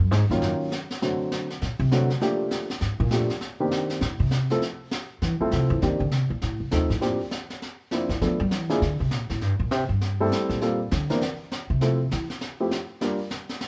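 Swinging at 200 BPM in 4/4, this relaxed, sophisticated small-group swing and bop fragment settles into F major from 4.6 seconds, with a woody, growly pizzicato upright bass taking the solo up front, a dark, mellow baby grand piano comping close by with audible action noise, and brushed snare sitting distant and roomy in the light reverb of a band playing live together in one room.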